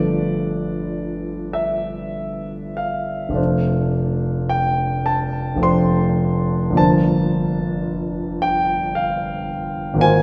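Serene and dreamy, this impressionist classical piece for solo piano drifts in 3/4 at a slow 48-58 BPM with a free, rubato feel, cut from a longer work. The concert grand sits up front with a clear, natural tone, deep bass and long sustain, ranging from F1 to C6 as it moves through G9, F6 at 3.4 seconds and Gm11 at 6.8 seconds. A lush concert hall reverb with a two-second tail places the listener further back in the room, wrapping the chords in spacious air.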